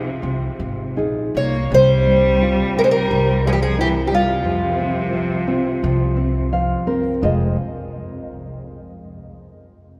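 Bathed in the long, wet reverb of a church or concert hall, this mournful, longing fado-style ballad excerpt drifts in rubato as a dark, woody, shimmering fingerpicked twelve-string guitar carries the octave-doubled melody up front over a smooth, clear bowed cello line with vibrato, a deep, thumb-plucked classical nylon-string guitar accompaniment that adds a fill at 6.2 seconds, and a thumpy pizzicato upright bass entering at 0.2 seconds, before the twelve-string and cello fall away at 6.5 seconds.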